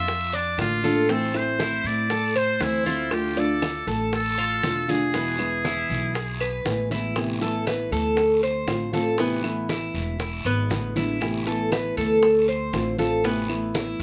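A dry, outdoor sound with little reverb frames this sultry Cuban son and guajira excerpt at 119 BPM in a straight 4/4, settling into A minor from 7.2 seconds. A muted trumpet carries the melody up front until 6.7 seconds, its buzzy, brilliant tone shaped by vibrato, scooped notes and a slapback echo. Beside it, the Cuban tres plays metallic, picked arpeggios on doubled strings, also with slapback echo, while a full-bodied nylon-string guitar fingerpicks the accompaniment through to the end. An upright bass adds growly, thumpy pizzicato lines underneath. In the background, tight high-tuned bongos, damped low-tuned congas, raspy guiro, grainy maracas and woody claves keep the percussion bed going, and the later section leans on Amadd9, Dm7 and E7 chords.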